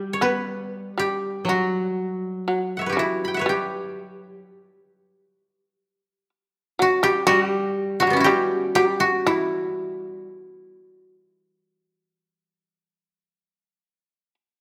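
Rubato and slow at 54-64 BPM in 4/4, this still, solitary fragment of Japanese chamber music in E kumoi sets a woody, up-front koto melody played with fingerpicks over a buzzing, percussive, plectrum-plucked fretless shamisen second line and a quieter, dry koto accompaniment that stops at 10.3 s, heard in a moderate recital hall reverb.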